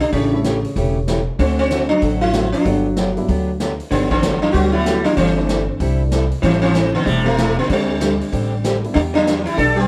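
A swung eighth-note pulse drives this country and western swing excerpt at 190 BPM in 4/4, with a distant, roomy big-band drum kit of hi-hat, medium-tuned snare and boomy kick, its top end rolled off. Up front, a plucked upright bass with a woody tone anchors the G major changes, which move from A7 and D7 to Gmaj7, then through C69/G, Am7 and D7sus4 before landing on Em7. The sitar carries the melody, its plectrum-plucked notes buzzing and round, with sympathetic strings shimmering inside a plate reverb. Behind it, a clean, compressed vintage hollow-body jazz guitar plays a second line. A bright, full-bodied dreadnought acoustic guitar joins at 0.1 s as accompaniment, and a worn, slightly detuned upright piano enters very quietly at 0.3 s. Light reverb gives the swinging, down-home groove a sense of space.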